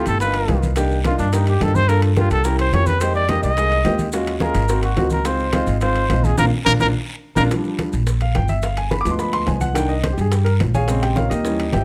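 A breathy, whispered trumpet opens this lively, sophisticated Afro-Cuban jazz passage at a brisk 214 BPM, soloing in an intimate, mellow voice with light vibrato and scooped notes over warm grand piano and a woody, growly pizzicato upright bass up front. Behind them sit bright low-tuned congas, ringing metal-shell timbales, a raspy guiro, grainy maracas and very quiet, tight high-tuned bongos, all through light reverb and close, detailed microphones. After a drum fill and band accent from 6.4 to 7.5 seconds over chords moving through lush altered and extended harmony, the trumpet stops and the piano takes a solo from 7.5 seconds until the cut.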